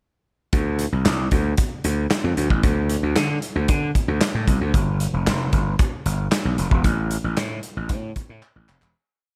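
At 0.5 s a gritty, growly slap bass with overdrive and an up-front modern studio drum kit come in together on a slick, late-night early-eighties boogie funk breakdown in D dorian at 114 BPM, the bass driving a fat syncopated line from E1 to D3 over a mid-tempo beat of punchy kick, hi-hat and a medium-tuned snare layered with handclaps. The bright, amped bass and the pumping studio room of the kit stay dry and close. The piece fades out from 6.8 s, and a drum fill closes it from 8.4 s.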